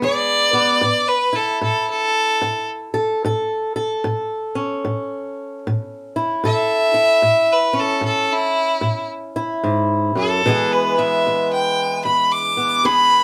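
Swung eighth notes at a relaxed 75 BPM in 4/4 give this acoustic country blues duo a rollicking, soulful lope. A bowed fiddle carries the melody from the first moment to the last, its tone clear and focused with a light vibrato, sitting up front and ranging from E4 up to D6. Beneath it, a fingerpicked swing-style acoustic guitar supplies the accompaniment across the low and middle register, its fresh strings sounding bright with a slightly boxy body and the occasional finger squeak. The harmony rests on E, moves to A at 0.8 seconds, and returns to E at 10.4 seconds. Both players sound as if they are performing together live in one room with a moderate studio ambience, in a 13.2-second passage cut from a longer piece.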